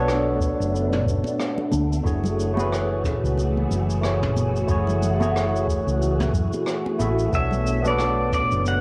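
Swung 16ths at 91 BPM in 4/4 carry this wistful sunset chillout excerpt in B dorian, where a deep, dry electronic kick, a distant brushed jazz kit with cabasa, rim click and toms, and soft-handed congas in the background sit beneath a dark, round hollow-body bass up front, a barky, lightly overdriven tine electric piano with analog delay and plate reverb, and a silky string machine with phaser and ensemble chorus moving from Bm9 to F#m9 and back, until a twangy, clean pedal steel guitar enters with a slide melody at 7.4 s, the whole take framed by a wet booth ambience and the lo-fi character of a home cassette recording.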